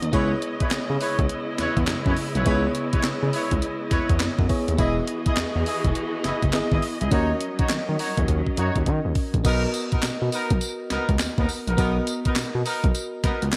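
Bright 1980s-style digital production with light reverb frames this bouncy, slick new jack swing excerpt at 103 BPM, its 16ths swung at 63%. An up-front, thumpy 12-bit drum machine with gated reverb, handclaps, tambourine and crash pairs with a smooth, wave-folded synth bass that glides with portamento. Meanwhile, a glassy, bell-like FM electric piano with chorus and punchy, distant horn stabs ride over C#m7, Emaj7 and D#m7. Lush bowed strings with vibrato sustain until 9.4 s, when a drum fill from 8.3 s ends and the harmony moves to Bmaj7.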